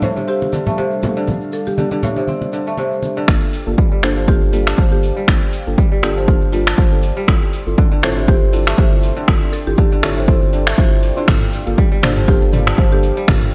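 A punchy, overdriven electronic kick drum arrives up front at 3.3 seconds with a house kit of finger snaps, metallic hi-hats and toms, a round sine sub bass and dark, warbling chord stabs, building this spiritual 120 BPM afro house excerpt in G dorian out of an opening where damped, low-tuned congas play until 3.1 seconds; throughout, a crisp, fingerpicked kora plays arpeggios with sidechain pumping, taking on a filter sweep once the beat enters, a buzzing, woody marimba carries the tape-echoed melody, a warm analog pad sustains chords, and a grainy egg shaker sits in the background of the gritty, transformer-saturated hardware sound.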